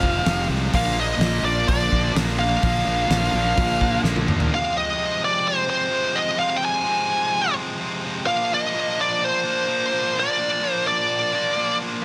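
Quiet-loud alternative rock, cathartic and brooding, where an up-front, bright high-gain lead guitar carries the melody over a picked high-gain distorted guitar riff, a compressed fuzz guitar and a double-tracked tight distorted guitar in the background, a growly, overdriven fingered bass up front and a loose indie drum kit with a fat snare and punchy kick in a pumping room, until a drum fill at 4.0 s gives way at 4.5 s to the two high-gain guitars carrying on over Fm and Bb, with the tight distorted guitar returning at 12.0 s, all in light reverb and studio ambience.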